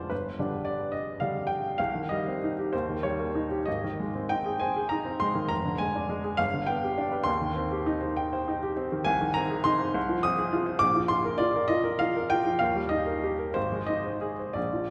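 A clear, woody upright piano sits up front in a wet concert-hall reverb, its short natural sustain trailing into a long, resonant room. This is a passage cut from a longer romantic character piece for solo piano in C minor, with a mood that is passionate yet hopeful. The music moves in 6/8 at roughly 57 to 74 beats per minute, counted in dotted quarters, with free rubato that lets the pulse breathe. The piano spans from deep F1 in the bass up to Eb6. After a brief opening on G, a new section begins at 1.8 seconds, moving from C minor through Eb7 and Ab, a diminished chord, and back to G. Later the harmony turns toward Fm7 and Bb, then settles on Eb and Ab as the 14.9-second passage closes.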